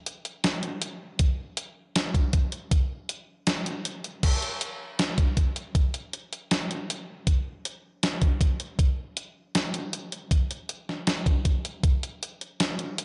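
A straight 4/4 rock beat moves at an unhurried 79 BPM, carried entirely by a crisp 8-bit digital drum machine that runs from 0.1 to 13.0 seconds. Its kit of kick drum, snare drum, hi-hat and crash cymbal has a sampler-style, electronic character, with a thumpy kick and a fat snare sitting up front. The drums carry a tape-warm tint and the air of having been re-recorded in a large room. Light reverb surrounds the sound, and the top end is rolled off above 10.9 kHz, giving the pattern a slightly dusky sheen. Cut from a longer piece, this single section feels wistful yet blissful, a gentle groove that lingers rather than drives.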